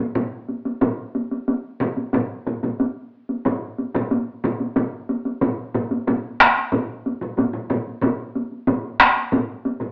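A solo taiko drum struck with hard sticks opens this fragment of a powerful, ceremonial Japanese traditional piece at 92 BPM in a straight 4/4, its vintage, band-limited tone sitting up front. At 0.2 s two taiko ensembles join with heavy sticks, one carrying the sound of a live room and the other sounding compressed and saturated, both close and forceful. The whole group plays together in one room under a wet studio reverb and an AM radio coloring, shifting into a new section at 6.1 s before the cut.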